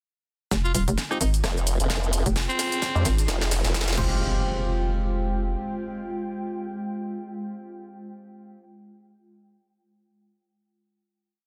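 This short bass house piece in F minor opens at 0.5 s with a hollow, knocking FM bass up front, its chopped phrases pumping against a punchy four-on-the-floor kick and a house kit of cracking snare, shaker, rim, open and closed hats and crash, all at 130 BPM with a swung 16th-note bounce. A raspy, gritty alto saxophone with vibrato and delay adds short solo phrases until 3.1 s, while a mellow, percussive organ stab drops sparse echoing chords moved in parallel under a filter sweep. From 1.4 s an ethereal, airy pad fades in with slowly shifting chords, and a saturated, detuned formant-sweep wobble bass answers the other bass with modulated phrases of changing wobble speed. The whole opening is a build-up with a drum fill, and a background riser and impact entering at 2.0 s carry the build to 4.2 s, after which the pad, organ and effects ring out as a final note until 8.7 s. The mood is bouncy and swaggering, set in light reverb on a dense, heavily limited modern master.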